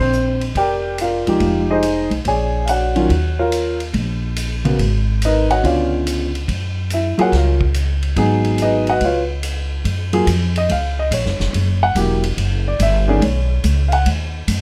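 Swung eighth notes at 142 BPM in 4/4 drive this sophisticated, playful jazz piano trio excerpt in F# major. A smooth, vintage grand piano with long sustain and plate reverb carries the melody up front, over a woody pizzicato upright bass with steel strings, while a big-band drum kit with punchy kick, medium-tuned snare, hi-hat and ride cymbal sits further back in a big, natural room. The harmony moves through rich extended chords such as Fm9, A#7alt and D#m9 before arriving at F#maj7, and reaches Badd9 at 13.2 seconds.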